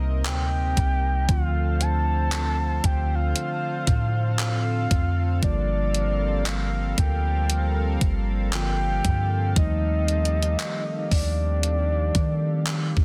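Contemporary R&B with a sensual, longing mood, where a boomy 808-style bass and a thumpy, gated 80s digital drum machine of handclaps, hi-hat and kick sit up front beneath a mellow tine electric piano, a shimmering chorused pulse-width pad holding sustained chords, and a round, octave-layered synth lead with vibrato carrying the melody from 0.3 seconds over a Cm9, Dm7, Gm7 and Ebmaj9#11 progression in a dense, heavily limited mix.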